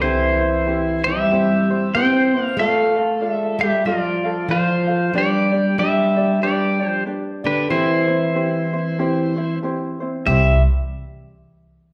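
A relaxed, languid Hawaiian groove at 94 BPM in 4/4 with a lazy swing on the eighths moves through C, Dm and G in C major, led up front by a bright, twangy pedal steel guitar played with fingerpicks, slide and volume swells, over a picked plugged-in steel-string acoustic guitar second line with audible finger squeak, a mellow thumb-plucked ukulele and a woody, thumpy gut-string upright bass, all heard as a band playing live in one room bathed in lush large-studio reverb, in a 10.6-second cut from a longer piece.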